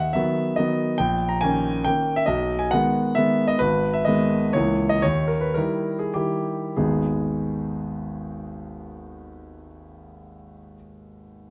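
A clear concert grand piano, natural and up front with a deep bass, plays this brief romantic classical dance in 3/4 from a longer piece, set in G# minor with dotted rhythms and a nostalgic, wistful mood. The tempo drifts with rubato between 90 and 151 BPM, slowing from 2.9 to 6.8 seconds before the harmony settles back on G# minor as a new section begins. Close, detailed miking captures the piano within a moderate recital hall reverb.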